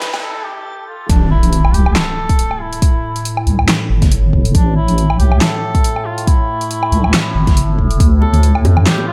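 A clear, vintage-toned duduk with light vibrato and dub echo opens this dark, meditative deep dubstep excerpt over an overdriven, half-time drum kit with a huge snare, bright hats, handclaps and woodblock, alongside a background riser, a filter sweep and a brief touch of warm congas and bongos, until the drop at 1.1 seconds brings in an up-front wobbling, compressed bass, a deep layered kick and a resonant, phaser-swept drone with moving overtones, with the hand percussion returning at 8.2 seconds.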